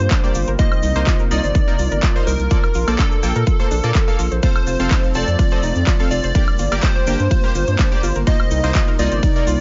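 Uplifting and hopeful, this progressive house excerpt moves in a straight 4/4 pulse, cut from a longer piece and cycling through minor chords that open onto brighter major ones. A punchy electronic kick sits up front from 0.1 seconds, joined by a round, deep analog bass that pumps against it, while a big-room dance kit adds handclaps, metallic hi-hats, ride cymbal and woodblock, with a grainy tube shaker tucked very quietly underneath. A catchy, bright unison lead carries the melody with digital delay, shadowed in the background by an airy, dreamy second lead whose vibrato and portamento give it a floating quality. Beneath them, a vintage, warbling analog pad holds sustained chords through lush chorus, a soft, mellow pluck traces arpeggios, and a detuned supersaw stab punches in from 0.2 seconds with delay trailing behind. The mix is dry and dark at the top end, with the sidechain pumping lending the layers a steady breathing motion.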